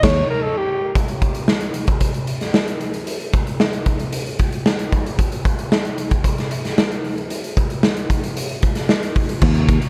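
A strutting funk piece at 113 BPM in Eb mixolydian opens with a full-band accent on an Eb7 chord: an alto saxophone with vibrato, plate reverb and analog delay sounds a brief pop-style phrase between G4 and Db5, while a bright, growly fingered electric bass hits a low Eb2. From 1.0 seconds the raw garage drum kit carries on by itself, its punchy kick, medium-tuned snare, hi-hat and crash cymbal sitting up front with a saturated, gritty edge, a rolled-off top and the pumping ambience of a bright stone room. The bass returns at 9.4 seconds just before this section, cut from a longer piece, ends.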